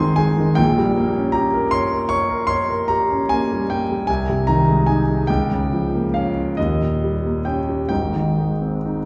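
Serene and tender, this romantic classical nocturne for solo grand piano drifts in a rubato 9/8 at about 42-53 BPM in Ab major, its clear, intimate, natural tone sitting up front with audible action noise, spanning Ab1 to Db6 through a short passage that moves from Ab through Gdim/Bb, Bbm/Db and Eb7 back home to Ab, all bathed in a wet recital hall reverb heard from further back in the room.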